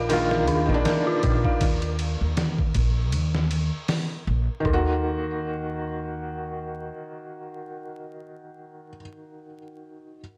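A slow trip hop groove at 79 BPM in 4/4 sways with a light sixteenth-note swing, driven by a compressed, pitched-down sampler-style drum kit of thumpy kick, medium-tuned snare, hi-hat and ride, re-recorded in a large room and sitting up front until about 4.8 seconds. Beneath it, a woody pizzicato upright bass with steel strings and transformer saturation anchors the low end, playing until 6.9 seconds. A felt-muted upright piano carries the accompaniment throughout, soft and intimate with audible action noise, colored by tremolo, tape echo and vintage 12-bit sampler grit. An eerie, inharmonic FM bell, detuned and chorused, spins arpeggios over the top with tape echo, while a warbling tape-like pad breathes barely audibly for the opening 1.6 seconds and a faint flickering granular texture glimmers until about 4.7 seconds. The brooding, dark mood in Eb harmonic minor moves from a Bb chord to Ebm at 4.7 seconds, and the whole fragment, cut from a longer piece, sits in a dry, gritty hardware sound with vinyl crackle and a digital ambience.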